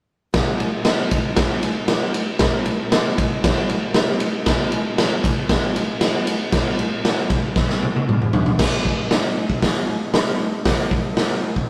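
A rough rehearsal-room sound with tube saturation and light reverb frames this short rock excerpt cut from a longer piece. A raw garage drum kit enters at 0.3 seconds, sitting up front with a gritty, saturated tone, a rolled-off top and the feel of a bright stone room. At 116 BPM in a straight 4/4, the kit uses kick, snare, hi-hat, ride, crash and toms, with a punchy kick and a medium-tuned snare driving the rowdy mood. A drum fill at 7.6 seconds leads into a new section at 8.6 seconds. The whole recording feels raw and unpolished, like a rough rehearsal-room take.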